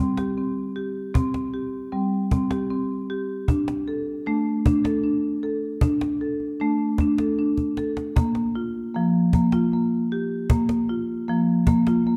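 A marimba played with medium-hard mallets leads this meditative world piece, its rosewood bars giving smooth, dark arpeggios between F3 and A4 that sit up front in the mix. It moves slowly and gently at 51 BPM in a straight 6/8, in D minor, with the harmony shifting from C5 to D5 at 3.5 seconds and to Bb5 at 8.2 seconds. A cajon joins at 0.2 seconds, woody and acoustic with faint snares, recorded close and dry and also placed up front, though a little lower than the marimba. It breaks into a short drum fill from 7.6 to 8.2 seconds before settling back under the marimba. The production is warm and wrapped in a wet echo-chamber reverb with a small-room ambience, and this brief section is cut from a longer piece.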